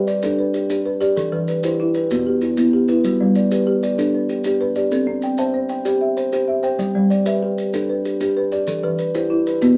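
A lightly reverberant recording of a band playing live in one room carries a hypnotic, rippling southern African traditional piece, an mbira-style interlocking cycle in G major at 128 BPM in 12/8, where an up-front, ringing kalimba with a dark, thumb-plucked tone and a dry, round folk marimba struck with soft mallets spin arpeggios over chords moving between G, Em and C, while quieter, grainy maracas sit beneath them in this short excerpt cut from a longer piece.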